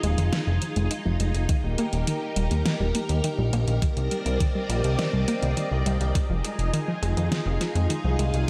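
Nocturnal and driving, this synthwave passage is cut from a longer piece and built on a lush, vintage string machine holding mellow chords with ensemble chorus and sidechain pumping, over a thick, nasal, saturated analog bass up front. A round, detuned analog pluck spins arpeggios with chorus and tape echo in the background, while a pop kit supplies a fat snare and metallic hi-hats, and an overdriven, thumpy electronic kick joins from 1.5 s to 6.3 s. The chords move from Fm7 through Eb and Cm7 back to Fm7, all set in a hall reverb that gives a big arena sound.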